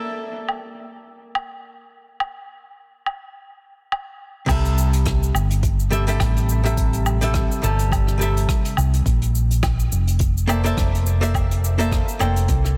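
Blissful and smooth, this sunset chillout excerpt moves at 105 BPM in 4/4 with a 16th-note swing, opening on a clean, compressed archtop guitar with tape echo voicing Bbmaj7#11 chords, joined at 0.5 seconds by a jazz brush kit with dark cymbals, cabasa, hi-hat, rim click and woodblock. At 4.5 seconds the harmony shifts to C6 as a round, up-front hollow-body bass and a soft, overdriven electronic kick enter, the kick carrying a small-room grit, before the harmony settles on Bbmaj9#11 at 9.1 seconds. Light reverb and a dense, heavily limited modern master give the mix a polished, intimate gloss.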